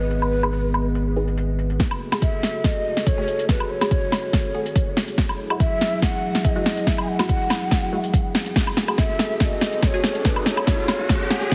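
A half-time deep dubstep groove with a light swing opens this dark, cavernous excerpt, where a breathy ney with unsteady vibrato carries the melody through dub echo over a detuned, moody analog pad, a saturated sub bass sits in the background, very quiet nasal chord stabs flicker, and an overdriven drum kit with a punchy snare, metallic hats and woodblock stays up front, joined by a deep electronic kick at 1.8 seconds and a riser at 9.5 seconds, all set in a moderate echo chamber with a heavily compressed radio sound and vinyl crackle.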